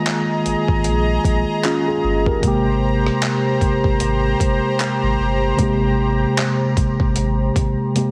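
A mellow, clean tine electric piano and a smooth, detuned analog pad with chorus and tremolo open this short, romantic contemporary R&B excerpt, shifting from Bb7sus4 to Abmaj9 at 2.4 seconds while a barely audible electronic downlifter sits beneath them. A gritty, overdriven sampler-style drum kit with a thumpy kick, hi-hat, rim click and handclaps sits up front in a lazy swung groove, joined at 0.5 seconds by a deep, round sine sub bass, and a drum fill arrives at 8.0 seconds. The mix is dry and heavily compressed, giving it a dense, radio-ready sheen.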